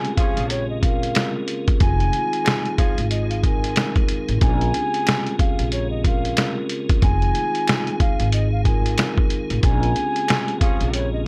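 A swung boom-bap groove anchors this reflective, dark hip-hop piece, with compressed, pitched-down sampler drums up front, a thumpy kick and a medium-tuned snare, joined at 0.4 s by a woody pizzicato upright bass and from 1.2 s by finger snaps in the background. A breathy flute with vibrato carries the melody through an analog delay over ringing soft-mallet vibraphone with a cassette-tape tint, while a lightly overdriven, piping tonewheel organ holds sustained chords further back. A distant, mellow saxophone section adds jazz-style stabs at the start and returns at 10.3 s, in a dry, gritty recording cut from a longer piece.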